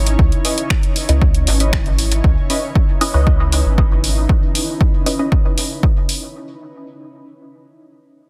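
Deep and hazy, this short dub techno fragment moves at 117 BPM in C# minor, opening on a C#m9 chord with a cloudy, blurred granular pad carrying its own reverb and a round, soft sub bass that drops out at 4.3 seconds, both pumping alongside a punchy, overdriven kick up front. A layered deep house kit adds finger snaps and hi-hat with a clipped snare and dub echo, while warbling, nostalgic lo-fi synth keys sit in the background with chorus for a brief riff. From 1.1 seconds a muted, detuned chord stab with phaser and echo joins in, and from 2.2 seconds filter sweeps move through both the stab and the pad in a dense, heavily limited mix.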